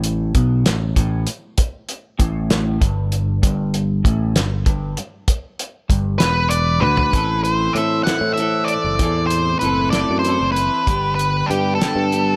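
A mysterious, hypnotic stretch of psychedelic rock, cut from a longer piece, moving in a slow 6/8 with a straight feel. A clean, compressed electric guitar plays the riff throughout, double-tracked and coloured by flanger, while a growly picked bass, bright and direct, holds down the low end beneath it. The cloth-damped drum kit sits up front with a thuddy, fat snare, a tight kick and a rolled-off top, working hi-hat and toms as well, and a drum fill at 6.8 seconds leads into the second section. At 6.2 seconds an octave-fuzz lead guitar enters with a dark, distorted melody, placed up front and trailed by analog delay. The harmony moves from Gadd9 and G5 to Am and G, all set in a small room within an echo-heavy mix.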